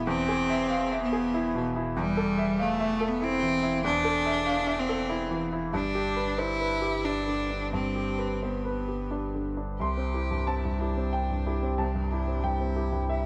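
A moderate plate reverb with a 3-second tail surrounds this short neoclassical passage for piano and strings, cut from a longer piece. The mood is tender and intimate, moving in 3/4 at roughly 85-96 BPM with a rubato feel in C major. A single bowed cello sits close and up front, its rich, focused tone carrying vibrato as it sings a second line in its middle register. A clear, slightly worn grand piano supplies present accompaniment across a broad span of the keyboard, while a pure sine sub bass lays down a deep, dark, smooth foundation with a fast attack and sustained notes. The harmony moves from E through Am/E to G, and at 9.8 seconds the music turns to a new section as it arrives on C.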